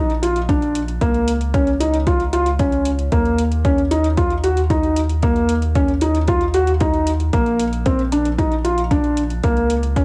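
A steady, straight 4/4 pulse at 114 BPM drives this hypnotic, intimate piano and strings electronica excerpt, where a felt-muted upright piano riff, soft and up front with audible action noise and tape echo, sits over a round, dark analog bass with sidechain pumping, metallic electronic hi-hats entering at 0.1 seconds, and a punchy, overdriven electronic kick arriving at 0.5 seconds, all within a light reverb and a home-cassette sound while the harmony moves among Bb, Db and Eb chords.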